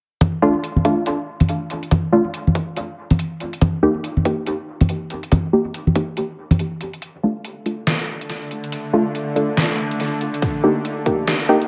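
A muted, detuned sawtooth chord stab with chorus and dub echo sits up front through this dark, meditative half-time deep dubstep excerpt, over a deep-snared electronic kit with tape echo, a punchy kick, and close acoustic congas that fall away during the break, before the stab's filter sweeps through a build-up from 7.0 seconds and a tense, string-like ring-modulated drone enters at 7.7 seconds, all bathed in echo-heavy spring reverb.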